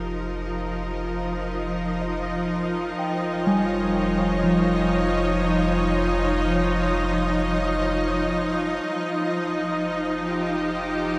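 In free time, this spacious, melancholic ambient excerpt sets an up-front, biting string section's sustained chords, fading in through its first 8.9 seconds, over a deep, round sub bass on F while muted, felt-like synth keys, dark and tucked in the background with chorus, tremolo and tape echo, spin soft arpeggios until they stop at 8.9 seconds, all soaked in a huge, dreamy reverb as F9sus4 gives way to Dbadd9/F and finally Ebadd9/F.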